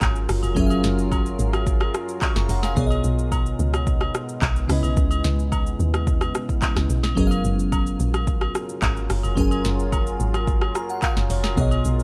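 A dry, close sound with little reverb frames this relaxed, soulful amapiano excerpt, moving at 109 BPM in a straight 4/4 in F# major. A deep, round log drum bass carries the low end with fast, decaying FM hits given a noise layer. An electronic afro-pop drum kit sits up front, with a deep kick, sharp snare, metallic hats, handclaps, rim click and shaker. Agogo bells and woodblock add small-room acoustic colour with maracas and group handclap, while a crystalline FM electric piano spreads sparkling chords through chorus and phaser, and a moody sawtooth pad with a sub octave holds sustained chords underneath, softened by chorus and its own reverb. The harmony moves from F#maj9 to B69 and C#m7 before returning to F#maj9, and the electric piano plays a fill from 10.5 to 11.6 seconds.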